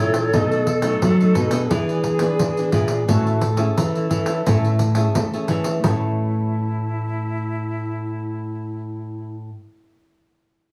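A breathy clarinet carries the melody in a jazz-inflected solo voice, close-miked with subtone, vibrato and scooped notes, and bathed in plate reverb until it drops out at 5.1 seconds. This lively, sunny fragment of samba and choro, cut from a longer piece, has a straight 4/4 feel. A hollow, pure concert flute plays a tongued second line with its own vibrato. Beneath them, a crisp, picked cavaquinho and a small, fingerpicked nylon-string guitar, with audible finger squeak in the background, supply the accompaniment. A second nylon-string guitar holds the bass, full-bodied and up front. A jingly pandeiro played with soft hands adds percussion until 6.0 seconds, as the harmony moves from B7 and E7 to Amaj7 and then settles on A in a modest studio room.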